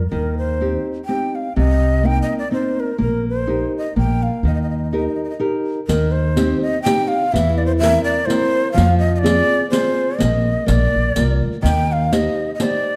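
Sunny and lively, this Italian folk serenade in a swung 3/4 sets a breathy, bamboo-toned shakuhachi with expressive vibrato up front over fingerpicked nylon-string guitar and woody pizzicato upright bass, with a riq's dark, saturated jingles joining at 5.9 seconds, all in a moderate recital-hall reverb.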